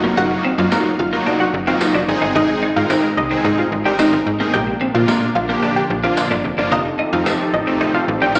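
A fat, detuned sawtooth polysynth sits up front with chorus and slapback echo, driving this euphoric, summery dance-pop excerpt over a clean, twangy twelve-string electric guitar riff and a snappy FM bass with a metallic attack. A lush, punchy unison pluck carries the melody from 0.2 seconds, with slapback and tape echo, while a mellow filtered supersaw swell holds sustained chords in the background beside a woody cajon, and a jingly tambourine joins at 0.7 seconds. The chords cycle through Ebmadd9, Ab, Bb and F7, and the whole mix sounds like a live gig heard through the venue's PA, with recital hall reverb and a small-speaker character.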